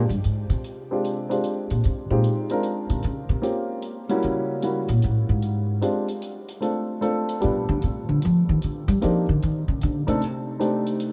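A swung jazz waltz, this relaxed, sophisticated piano trio fragment features the upright bass as soloist throughout, its woody, thumpy gut-string pizzicato sitting up front. A baby grand piano with audible action noise and short sustain carries an intimate melody over a sequence of rootless extended chords, diminished colours and minor turns, while a distant, roomy hi-hat enters at 0.1 seconds. A huge reverb places the trio in a vast, echoing space.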